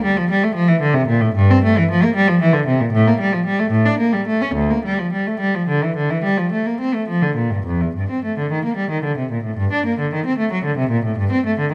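Introspective and flowing, this baroque-style suite movement for unaccompanied cello unfolds in 12/8 with a supple, rubato feel. A single bowed cello, rich and up front, sings across its low and middle register with vibrato, soft attacks and expressive portamento, shifting to a new tonal centre at 8.0 s. Close, detailed microphones catch every nuance, while a moderate recital hall reverb lends the fragment an airy bloom before it is cut off at 11.7 s.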